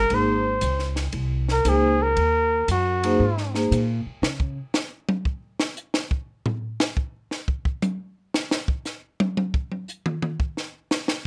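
A mellow trumpet with light vibrato and scooped notes leads this playful jazz fragment, a short cut from a longer small-group swing and bop piece at 117 BPM in 4/4 with a swung eighth-note feel in Ab mixolydian. Its smooth-topped solo line sits up front, bathed in plate reverb, while soft-malleted vibraphone rings out an Ab9 chord with medium motor vibrato and pizzicato upright bass adds a woody, thumpy pulse. The trumpet drops out at 3.5 seconds and the bass at 4.6 seconds, leaving the compact cocktail kit to carry a drum solo from 4.2 seconds to the close at 11.3 seconds. That kit sounds dry and close, with dark cymbals, a high-tuned snare and a punchy kick moving across hi-hat, ride and toms. A light reverb gives the small group a cozy, intimate glow.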